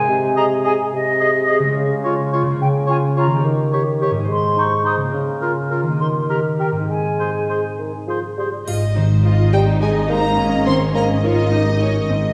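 A mischievous, whimsical cinematic cue in 6/8, cut from a longer piece, where an up-front, ringing harp plays fingerpicked arpeggios beneath an airy flute, a distant clear clarinet and a lightly vibrato cor anglais over a dark bassoon accompaniment, before lush bowed string sections enter at 8.7 s with a focused violin melody, expressive violas, cellos and double basses in the background, a brief dry triangle and a smooth second violin line from 9.5 s, heard from further back in a scoring-stage reverb.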